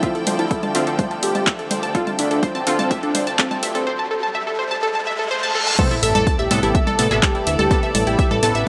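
Melodic techno at 125 BPM in A minor, hypnotic and melancholic, this excerpt builds over a Dm7 chord with a filter sweep on the bright, round analog pluck arpeggios, an evolving sweeping resonant pad, a clear, lush symphonic string section, brassy synth stabs in the background, and a thick, dark unison lead melody with digital delay. An overdriven, dry electronic kick and a punchy analog drum machine with congas, crash cymbal, handclaps and hi-hat sit up front, while a fat, nasal analog bass enters at 0.3 seconds and the sidechain pumping breathes through the melodic parts. A background riser and reverse cymbal lead to the drop at 5.8 seconds, where the harmony moves to Amadd9 under an impact, with a sub drop rounding out the background effects, all set in a moderate, lush hall reverb.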